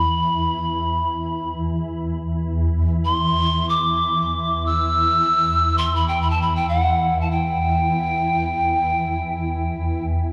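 Free-time and unhurried, this haunting, spacious excerpt of world meditation music in E minor sets a breathy bamboo pan flute, tongued with a soft chiff and trailed by delay, singing a straight-toned melody high above a shimmering, detuned pad that holds a low E drone with chorus and an octave-up glint, all bathed in a dark church reverb across its 10.3 seconds.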